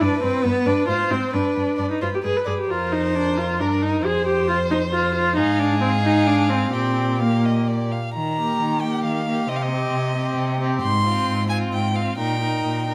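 A quick classical-period movement for string quartet in Eb major at 133 BPM in 3/4, cut from a longer piece, with an urgent, stormy mood. Two bowed violins play throughout, one carrying the melody with expressive vibrato and portamento, the other holding a focused second line, while the viola sits up front with its own sliding, expressive accompaniment and the cello anchors a smooth, even bass close by. The four single players share a moderate recital hall reverb, and the music turns to a new section at 8.1 seconds, moving through Eb, Cm and Fm/Ab.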